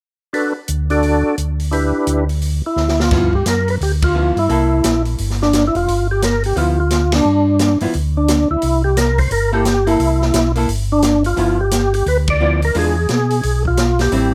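A swinging 4/4 groove at 174 BPM drives this greasy, soulful soul jazz organ trio excerpt, where a percussive, lightly overdriven tonewheel organ carries the melody through slow rotary speaker, chorus vibrato and plate reverb, a round, mellow tonewheel organ with key click holds down the bass, an open acoustic drum kit with dark cymbals and a boomy kick adds a fill at 2.8 seconds, and a dark, hollow-body archtop guitar joins the accompaniment at 3.1 seconds as the band hits accents over chords moving from D6 through C13 to E7b9 in a moderate booth ambience.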